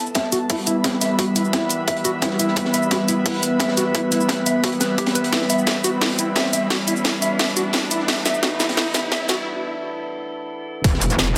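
An overdriven drum and bass kit with a cracking snare, bright hats and cabasa drives this aggressive, futuristic dark technical drum and bass build-up at 174 BPM in E minor, layered with a tight electronic kick and a gritty, high-tuned breakbeat kit in the background, while an airy, breathy pad, an eerie, inharmonic metallic drone and mellow, clean guitar arpeggios through a filter sweep and dub echo all pump with the sidechain, a background riser enters at 4.1 s, a drum fill arrives at 5.3 s, and after a break a distorted FM wobble bass hits with the impact at 10.8 s, cut from a longer piece.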